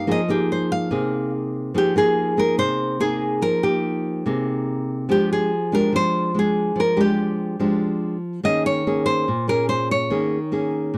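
A bright, fingerpicked nylon-string guitar carries the melody up front in this melancholic, intimate bossa nova, cut from a longer piece and set in F minor at 144 BPM in a straight 4/4. The opening 1.7 seconds feature a guitar solo passage before the music moves into a new section. A second nylon-string guitar, warm, full-bodied and also fingerpicked in a classical manner, supplies the accompaniment up front, ranging from the low register up into the middle, with audible finger squeak. The harmony rests on Fm11, shifts to Fm69 at 5.1 seconds, and settles on Eb7sus4 toward the close. The sound is dry and close, in the manner of a 1970s studio recording, with only a light touch of reverb.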